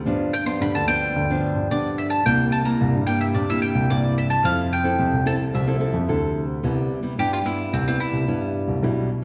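Lively and festive, this short fragment of samba and choro in F major moves at 110 BPM in a straight 4/4, with a picked bowl-back mandolin carrying the melody on its double strings, a small, fingerpicked nylon-string guitar with fresh strings supplying accompaniment, and a dark, boxy, worn grand piano holding the bass, each sitting up front in a wet recital-hall reverb with a dulled top end, while the chords pass from G7 through C7 and Fmaj7 before a new section arrives on Cmaj7 at 6.6 seconds.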